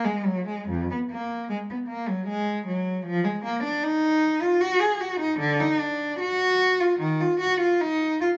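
Classical, baroque-style suite movement for unaccompanied cello in Eb minor, a flowing, solemn fragment of a longer piece at a rubato 76 BPM in 4/4, where a single bowed cello sits up front with expressive vibrato and portamento, spanning a range of F2 to Ab4 across its 8.3 seconds, caught by close, detailed microphones in light reverb.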